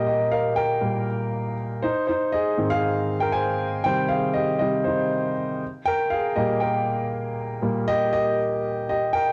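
A lone grand piano carries this short pop fragment, cut from a longer piece, its intimate, natural tone sitting up front with long sustain and audible action noise from the keys. Playing solo from 0.0 to 9.3 seconds, it spans Ab2 to Ab5 in Eb major at 119 BPM in a straight 4/4. The mood is uplifting and anthemic, moving through Eb/Bb, Ab and Cm before returning to Eb/Bb. A cassette tape character colours the piano, and a moderate spring reverb with small room ambience surrounds it. The result feels like a home recording on cassette, close and personal while still reaching for something grand.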